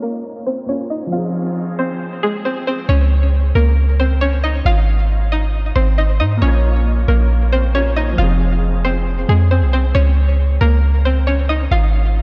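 Muffled by a low-pass filter and light small-room reverb, this eerie, dark hip hop and trap excerpt at 136 BPM in a half-time feel opens with a filter sweep over a twangy, string-like resonator pluck carrying the melody through chorus and tape echo, joined by a mellow baby grand piano with long sustain and ensemble chorus at the start and again from 6.4 to 10.0 seconds, while a deep, boomy 808-style bass enters up front at 2.9 seconds beneath minor chords centred on Bbm and Fm.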